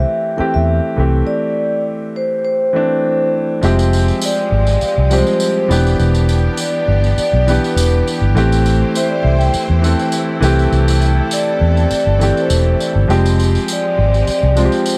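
Lush 1970s-style soul at 102 BPM in C major, smooth and gently swung, where a mellow soft-mallet vibraphone carries the melody through an analog delay over clear, up-front concert grand piano and a dark, round, foam-muted fingered electric bass, until at 3.6 s a distant bowed string section with vibrato, a jingly vintage tambourine and a very quiet, slightly out-of-tune celesta join, the whole mix sitting in light small-room reverb in this cut from a longer piece.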